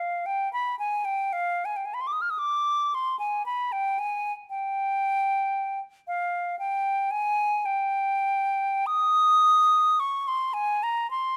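A solo concert flute carries this brief classical fragment, cut from a longer piece and lasting about 11.4 seconds. Its pure, straight tone sits up front, with tongued notes moving through the upper register from F5 to F6. The playing is free and expressive, unfolding in 3/4 with a rubato feel somewhere between 47 and 60 BPM. The mood is mournful and yearning, and the unaccompanied line carries that feeling alone. Close, detailed microphones and very little reverb give the sound an intimate, dry presence.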